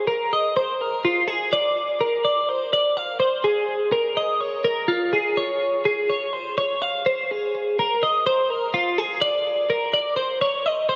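A twelve-string electric guitar carries this short rock passage on its own, sounding bright, clean and twangy, with a picked, compressed tone that sits up front in the mix. Its line stays between F4 and F5, and analog chorus and delay add shimmer to the ringing strings. The tempo is 125 BPM in a straight 4/4, and the tuning sits slightly sharp, with A4 at 441 Hz. A huge ambient reverb with a 4.4-second tail soaks the whole sound in a dreamy, wet haze. The mood is intricate and wistful across the 11 seconds, which are cut from a longer piece.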